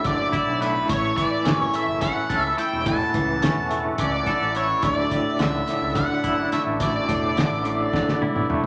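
Psychedelic rock in 7/8 at 213 BPM in D major, hypnotic and trippy, this short cut sets a dark octave-fuzz lead guitar melody with wah and distortion up front beside a twangy, clean fingered electric guitar riff through tremolo, a tonewheel organ in the background holding fat, lightly overdriven chords with key click, chorus vibrato and slow rotary speaker, a direct-and-amped overdriven fingered bass, and a muffled, cloth-damped drum kit with a fat snare, tight kick and gritty lo-fi saturation that plays a fill from 7.9 s, over chords moving from Dsus2 to A and back in a moderate large studio reverb.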